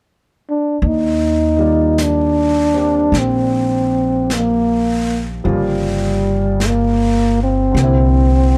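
A mellow trombone opens this tender, romantic jazz ballad excerpt at 0.5 s, carrying the solo melody up front with a soft attack, light vibrato, scooped notes and a smooth top, set in plate reverb. Upright bass and a brushed drum kit join at 0.8 s as the harmony settles on Ebmaj9, giving the slow tempo a gentle swung lilt. The pizzicato bass sits close and woody, with a thumpy steel-string tone. The drums stay far back, an airy, polished small-room kit of brushed snare and hi-hat. From 1.6 s a clear baby grand piano adds open, long-sustaining chords in the background, and the harmony later moves through Gm7b5 to C7. The production is dark and lightly reverberant, giving the recording an intimate late-night glow.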